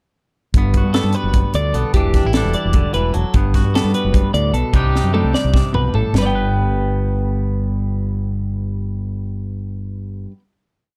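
A playful, bright piece of math rock and midwest emo, moving at 300 BPM in eighths through a straight 7/8 metre in G major. A growling, overdriven fingered electric bass sits up front with a syncopated riff, while a crisp fusion drum kit with a high-tuned snare and punchy kick drives the 7/8 groove across hi-hat, kick, snare and toms. A twangy electric guitar plays clean, syncopated fingerstyle accompaniment, and a compressed twelve-string electric guitar picks a warm, clean arpeggiated ostinato. The harmony cycles through Gmaj7, Em7 and Cmadd9, and a drum fill from 4.9 seconds leads to the drums stopping at 6.2 seconds. The guitars and bass then ring out on a final G chord. The whole piece is short and close-sounding, with little reverb and a dark production.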